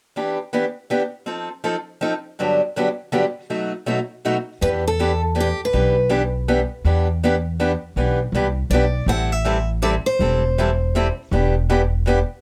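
A bright, freshly strung steel-string acoustic guitar opens alone with picked accompaniment in E minor, setting a swinging 3/4 jazz manouche feel at 161 BPM. At 4.6 seconds a woody, thumpy pizzicato upright bass with gut strings joins, and a second picked guitar, boxy with audible finger squeak, adds short virtuosic melodic phrases over chords moving from Em7 to Am7. The dark production carries light reverb, with both guitars and the bass sitting up front in this excerpt from a longer piece.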